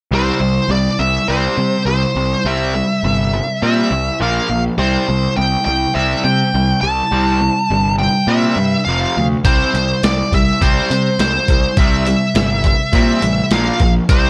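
A dry hard rock excerpt with a swaggering, anthemic mood moves at 103 BPM in C mixolydian, where an up-front, distorted bluesy lead guitar carries the melody over a bright, double-tracked semi-hollow guitar riff and a punchy, fuzz-laden picked bass, before a gritty, tape-warm boom bap sampler-style kit with a thumpy kick and medium-tuned snare joins at 9.4 seconds.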